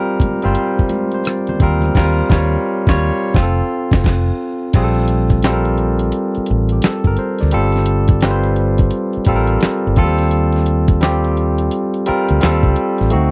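A gritty, sampler-style soul drum kit with a thumpy kick, fat snare, handclaps and rim clicks sits up front in this sultry, introspective neo-soul excerpt alongside a barky, lightly overdriven tine electric piano through a combo amp, a round, dark fretless electric bass with tube saturation, and faintly ringing high-tuned congas that drop out at 1.9 s, all in a dry, close 1970s-style room, with a band accent from 1.9 to 4.7 s before the chords settle into Bbmaj7 and Gm9 territory.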